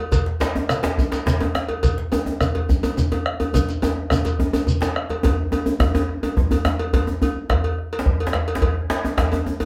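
Driving and festive, this excerpt of West African traditional drum ensemble music moves at 141 BPM in a straight 12/8, with a deep, dark bombo, a saturated metallic cowbell, a tight, cracking djembe played with hard hands, a second djembe that sounds warm and deep with metal rattles under soft hands, and a grainy shekere that drops out at 4.9 seconds after a drum fill from 3.5 seconds leads into a new section at 5.2 seconds, all set in a small, reverberant room heard from further back.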